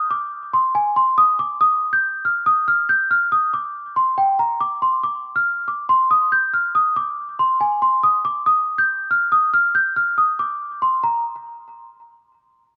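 A rough home-demo mix with a dull, rolled-off top end sits inside a lush hall reverb, giving this fragment of a longer hip hop piece a cold, ominous air over a half-time feel. A lone celesta, bell-like and delicate with soft felt hammers, plays up front in a high register through a low-pass filter, its mellow tone softened further. It carries the piece alone until 11.2 seconds, just after the closing section begins.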